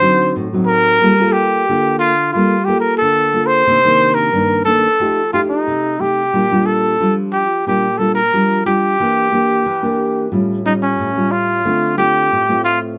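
A sunny, joyful samba cut from a longer piece, with a mellow, breathy trumpet singing the melody in a vintage jazz style, full of vibrato and scooped notes, over a fresh-stringed nylon-string guitar thumb-plucked in a classical manner, both up front and moving through rich chords such as Gm9, F9 and Aaug7, captured by close, detailed microphones in light reverb.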